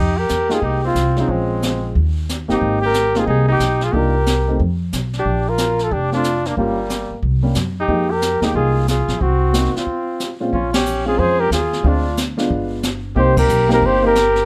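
A bucket-muted trumpet carries the melody in a veiled, vintage tone with vibrato and scooped notes, while a second, warmer trumpet with light vibrato plays a line beneath it over woody, thumpy pizzicato upright bass, all starting together in this moody, swinging small-group jazz cut in F minor at 182 BPM. A distant, roomy brush kit with dark cymbals, a high-tuned snare and punchy kick joins at 0.3 seconds, and a mellow, natural-sounding upright piano comps from 0.5 seconds through chords such as Fm11, Abmaj9 and G7b9. A break at 9.9 seconds leads into a new section, where the band hits accents together under a light reverb.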